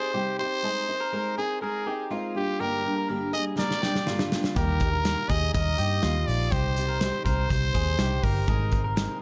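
Breezy and nostalgic, this short excerpt of jangly indie pop moves at 122 BPM in a straight 4/4, cut from a longer piece. A growling, raspy trumpet carries the melody up front from the start, its gritty, brilliant tone touched with light vibrato and tape echo. Beneath it, a picked steel-string acoustic guitar with an auditorium character picks out the accompaniment while an electric guitar through a small old amp adds slightly broken-up, lo-fi arpeggios, both also run through tape echo. A drum fill brings in the modern studio kit at 3.6 seconds, with a punchy kick, a medium-tuned snare and hi-hat in a pumping room sound. At 4.6 seconds a vintage muted electric bass joins with a dark, round, foam-muted tone as the chords move through Cm, Abadd9, Gm and Eb, all set in an echo-heavy small-room ambience.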